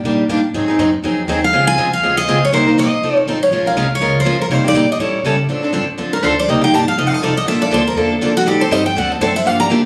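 A boxy parlour guitar carries the melody from 1.4 s, its tone touched with tape echo, and moves into a fiery solo at 5.5 s as the key shifts from Bb minor to D minor. This is a swinging acoustic jazz manouche piece at a brisk 242 BPM in 4/4. Beneath it, a bright dreadnought guitar with audible finger squeak picks the up-front accompaniment, and a woody pizzicato upright bass sits lower in the mix, all heard through a phone recording with light reverb and compression in this cut from a longer piece.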